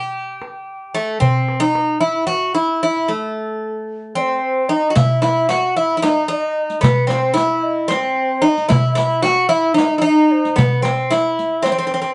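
A metallic, picked bouzouki sits up front with its double strings ringing out the melody. A soft-handed clay darbuka joins almost at once, driving a hypnotic, longing Turkish makam groove in 7/8 at 224 eighths per minute, tuned to A4 = 435 Hz. During a brief stop, a breathy, hollow ney with vibrato enters at 4.2 seconds as a quieter second line, the riq's dark jingles come in at 5.0 seconds, and a drum fill at 11.9 seconds closes this cut from a longer piece in a moderate studio reverb.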